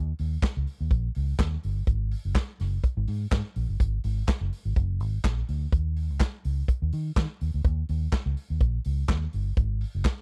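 A dark, round, foam-muted electric bass opens this sultry, danceable disco excerpt, joined at 0.2 seconds by an up-front vintage acoustic drum kit of handclaps, hi-hat, tight kick and medium-tuned snare with a rolled-off top, all captured in a dry, close 1970s-style studio sound.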